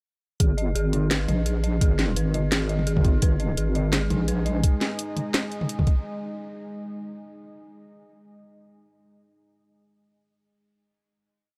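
A swung half-time drum and bass beat at 170 BPM in G# minor drives this short, tense, cinematic piece. An overdriven, thumpy electronic kick sits up front beside a sparse kit of cracking snare, bright closed hi-hat and low tom. From 0.4 seconds a deep square-and-sine wobble bass with chorus plays modulated phrases of changing wobble speed, while an eerie, inharmonic FM bell loops a 6-step arpeggio through chorus and digital delay that drifts against the bar; at 4.0 seconds a moody sawtooth pad enters with sustained, slowly shifting chords, coloured by 12-bit sampler grit, built-in reverb and sidechain pumping, all in a dark, dry mix.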